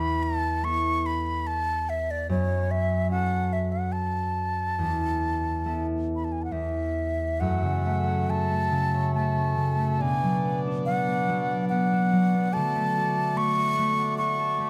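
Celtic slow air in a rubato, unevenly pulsed 3/4, tender and wistful, where an airy wooden flute with vibrato and a crisp attack carries the melody up front over ringing, fingerpicked concert harp, joined at 7.4 s by a reedy, breathing hand-pumped harmonium holding mellow sustained chords beneath, captured by close, detailed microphones with light reverb in a passage cut from a longer piece.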